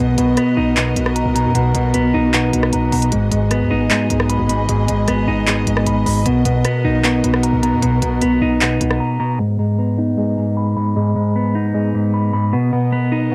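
A picked, compressed clean electric guitar sits up front in this dark, melancholic hip hop and trap piece in G# minor, cut from a longer track and moving at 153 BPM with a half-time feel. A mellow tine electric piano plays arpeggios that sound as if heard through built-in speakers and carry tape echo, while a lush, bowed symphonic string section holds smooth, vibrato-tinged chords. The harmony moves from Bmaj7 to G#m7 and back, and a filter sweep runs through the closing section over G#m and Bmaj7. A punchy, heavy 808-style bass with a sine body, a noise layer and a fast attack plays from the start, and from 0.2 seconds an electronic trap kit adds crisp hi-hats, handclaps and rim clicks. Both drop out at 9.0 seconds for a break, the strings return at 12.5 seconds, and a very quiet electronic swell closes things out. The guitar, electric piano and strings are low-pass filtered and carry cassette tape colour, and the whole mix has light reverb and the feel of a home recording on cassette.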